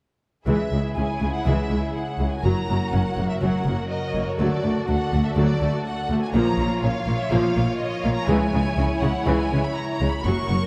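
A short cut from a longer piece, this cinematic adventure cue opens at 0.5 seconds with the full string body and harp sounding together, carrying a swashbuckling, heroic mood in a straight 4/4. Lush violin sections take the melody high above, with a second violin line beneath, both bowed with soft attack, vibrato and an expressive, smooth sheen. Violas fill the middle with an intense, rich accompaniment, while focused cellos sit in the background and a close, chamber-sized double bass section anchors the low end with rich, expressive, bowed tone. A bright, ringing concert harp traces arpeggios in the background, adding sparkle to the dark, velvety blend. The harmony moves from C#m through F#, D and A#m before returning to C#m at 8.3 seconds, all bathed in the long, wet reverb of a scoring stage until the strings fall away around 10.7 seconds.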